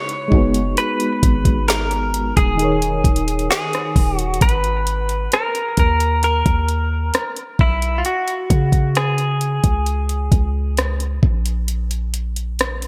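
A smooth R&B drum kit sets a slow, straight 66 BPM pulse in 4/4, its knocking kick, woody snare, rim click and metallic hats sitting up front under gated reverb, while a deep, boomy 808-style bass with a mellow sine tone enters at 0.3 seconds. This sensual, moody contemporary R&B fragment in G# minor opens with a dark, full-bodied FM electric piano with tremolo carrying the chords until 4.4 seconds, as a twangy, picked clean electric guitar, recorded direct and compressed, plays the melody through lush chorus and delay until 10.7 seconds. Light reverb and bright 1980s-style digital production give it a polished sheen as the harmony moves from G#m7 and D#7sus4 to G#madd9 and C#5 before the chords fall away.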